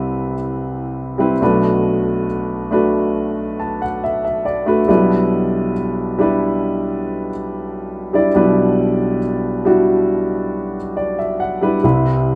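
Folk piece for solo piano in E minor, moving at a slow 69 BPM in 4/4 with a straight feel and a melancholic, reflective mood. A dark grand piano carries the whole 12.4-second excerpt alone, ranging from B1 up to A5. Its tone is mellow and intimate with a boxy character, long sustain and audible action noise, and it sits up front in the mix. The harmony moves from Cmaj7 to Bm7 at 1.4 seconds, settles on Em7/B from 4.9 seconds, and returns to Cmaj7 at 11.8 seconds. A moderate large-studio reverb surrounds the instrument, giving the sense of a performance captured live in one room, cut from a longer piece.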